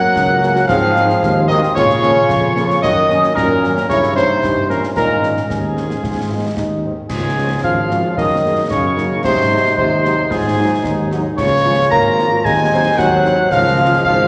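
A military-style march for wind band in Db major at 112 BPM in a straight 2/4, rousing and proud, with a mellow, lightly vibrato cornet up front on the melody while a punchy euphonium, a pure, distant wooden piccolo and a dark, roomy woodwind section in the background carry second lines, a very quiet trombone section holds soft-attacked chords, a smooth-topped French horn section accompanies from 0.4 s, a tuba anchors the bass, and close, dry concert snare drum, concert bass drum and bright clash cymbals play through a wet concert hall reverb.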